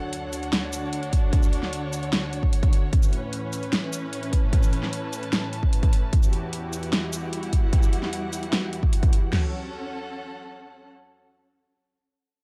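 The sound is dark and dry, with little reverb, and the drums sit up front in a small room. This excerpt is heavy wobble dubstep in F# phrygian at 150 BPM in 4/4 with a half-time feel, and the mood is aggressive and chaotic. A lush, detuned sawtooth supersaw pad holds soft-attacked sustained chords with a long release, roughened by vintage 12-bit sampler grit and pumping against the sidechain. A rich, bowed chamber string section with vibrato pumps alongside it as a focused ensemble texture. Two layers of tape-warm electronic drums give hi-hat, shaker and a huge snare from the very start, joined at 1.1 seconds by a punchy kick, crash cymbal and toms. The chords move from Dmaj7 to Aadd9 to Emadd9, landing on F#m at 9.3 seconds as the drums and pad fall away, and the strings carry on to 10.9 seconds.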